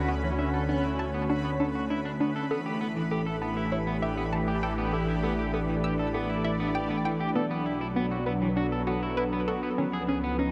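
A straight 4/4 pulse at 99 BPM carries this mysterious, expansive stretch of sequencer-driven space music, where an airy, up-front pad sustains chords with chorus while a twangy clean electric guitar arpeggiates through tape echo, a fat analog bass holds the low end, a bubbling stepped-filter texture adds its own reverb, and a hollow, bouncy square pluck plays a background riff from 0.1 s, all moving through Dmaj7, A7sus4, Bm7 and C#7 in a vast, echoing space.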